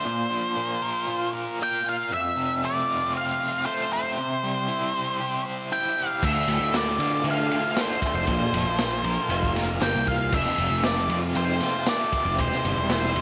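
A dark, octave-fuzz lead guitar carries the melody up front, its distorted, picked line sitting between C5 and G5 and trailed by tape echo. This mysterious, trippy psychedelic rock excerpt moves at 117 BPM in a straight 4/4. Beside it, a bright, double-tracked overdriven guitar plays a crunchy, picked riff with tremolo, ranging from D2 up to C5. At 6.2 seconds a fuzzy, overdriven picked bass enters along with a gritty, saturated breakbeat drum kit and a jingly tambourine in the background. The kit sits mid-forward and up front, with a tight kick, a medium-tuned snare, and dark, rolled-off crash and ride cymbals. Over light reverb and small room ambience, the chords cycle through Bbsus2, F6, C and Dm, landing on C/E near the end.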